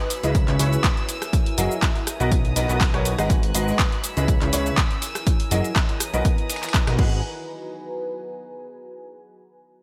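Bittersweet and soulful, this piano house excerpt at 122 BPM in G# minor drops straight in with a clear, vintage grand piano riff carrying delay over a C#m7, F#9, Bmaj7 and G#m7 progression, driven by an up-front punchy kick, a fat, nasal, detuned analog bass with tube saturation, a tape-toned analog drum machine of handclaps, hi-hats, rim clicks, shaker and crash under gated reverb, and a gritty, very quiet sampler-style kit of fat snare, hi-hat and tambourine, while a floating bowed violin section and a deep, moody, evolving pad pump with the sidechain, the pad lingering alone from 7.2 s to 9.2 s in a bright 1980s-style digital mix with light reverb.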